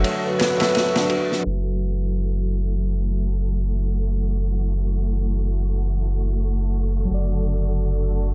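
A swung 4/4 groove at 85 BPM opens this melancholic, cinematic trip hop fragment in F# minor. A crunchy, saturated breakbeat kit of ride cymbal and medium-tuned snare plays only through the opening break before dropping out at 1.4 seconds. A round, deep dub sub bass holds F#1 up front throughout, beneath a bell-like tine electric piano that carries the accompaniment with harmonic tremolo and tape echo, and a clear studio string section sustaining bowed chords with vibrato. Early on, an eerie, inharmonic FM synth bell spins chorused arpeggios in the background, while a mellow, hollow wooden flute touches a single B4 between 0.2 and 1.3 seconds, roughened by 12-bit sampler grit and tape echo. A tense, string-like drone on A4 sits far back in its own reverb. The harmony moves from D to F#m7 and then D/F# as a filter sweep runs across the longer second part, set in a dark production with light reverb and small room ambience.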